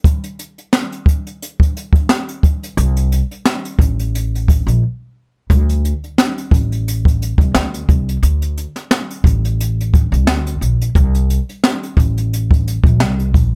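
A dry, up-front recording carries this dark, reflective boom-bap hip-hop excerpt at 88 BPM with a gentle 16th-note swing, opening on an airy, polished jazz brush kit with a high-tuned snare, boomy kick and hi-hat playing alone before a woody, pizzicato upright bass on steel strings enters at 2.8 seconds in its low register.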